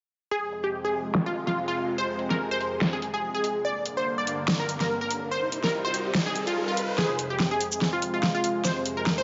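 A punchy, detuned sawtooth pluck leads this short, menacing cut of heavy wobble dubstep, carrying the melody up front through phaser and delay from 0.3 seconds over a lush supersaw pad that holds slow-attack chords through Fm, Gm and Cm in F dorian. An overdriven, layered dance kit with a huge snare and metallic hats drives the half-time 144 BPM groove with a swung feel, its filter sweep running until 7.0 seconds while a background riser from 4.7 seconds leads into a drum fill and build-up from 7.0 seconds. A lush hall reverb gives the whole a spacious, dark-topped sound.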